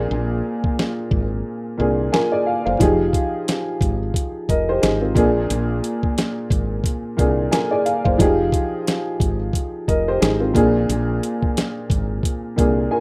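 A rough, lightly reverberant home-demo sound frames this reflective, moody boom-bap hip-hop excerpt, where a dark, worn upright piano with audible action noise and a cassette-tape tint moves between Bb7 and Fm9 chords up front over a hollow-body fretless bass, while a gritty, pitched-down sampler drum kit with a thumpy kick enters at 0.6 seconds, its kick dropping out from 1.5 to 2.8 seconds during the opening break.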